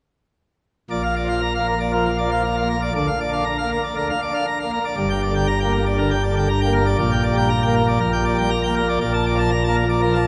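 A classical organ toccata in B-flat major at 119 BPM, this short excerpt from a longer piece sounds jubilant and majestic as a solo pipe organ on full plenum enters at 0.9 seconds and plays until 10.3 seconds, spanning G1 to Bb5. The up-front registration is brilliant with mixtures and a crisp baroque chiff, moving from Bb through Gm to a closing Bbmaj7. A cathedral reverb with a 5.2-second decay surrounds the sound, and the tuning sits slightly low at A4 = 438 Hz.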